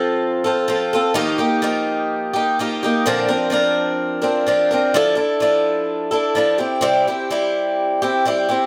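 A straight 4/4 pulse at 127 BPM drives this short rock passage, cut from a longer piece and lasting about 8.7 seconds. A picked twelve-string acoustic guitar plays alone, sitting up front with a shimmering, octave-doubled sound and a slightly boxy body, ranging from Bb2 to Bb4. A slapback echo trails the guitar, and a light reverb gives the recording a touch of space. The chords move from F through Ebadd9, Bbadd9 and Dmadd9 before landing on C. The jangly tone and those added-ninth colours give the passage a nostalgic mood.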